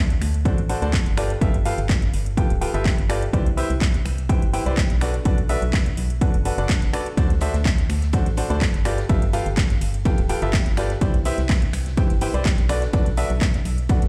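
A bright, woody upright piano carries the riff in this uplifting, joyful piano house cut, its short-sustained notes pumping against the sidechain and trailing tape echo over a D7, G9, Cmaj9, Bm7 progression at 125 BPM with a light swing. Beneath it, a hollow, organ-like FM bass with a fast attack and dark decay pumps alongside a punchy, overdriven electronic kick, while an overdriven house kit adds finger snaps, handclaps and metallic hi-hats. From 7.2 seconds a very quiet acoustic fusion kit brings in ride cymbal and a high-tuned snare, and the whole excerpt sounds as if played through a big sound system in a bare stone room.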